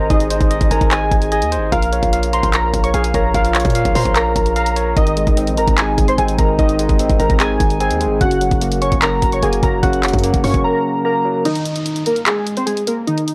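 A half-time trap groove of knocking kick, bright hats and handclaps drives this dark, melancholic hip hop clip, where warbling, detuned lo-fi synth keys carry a nostalgic melody over a barky, overdriven tine electric piano, a very quiet French horn section holding mellow chords and a punchy, heavy 808-style bass, before a break at 11.5 seconds brings in a background downlifter beneath the keys and drums, all captured in a dry, gritty sound.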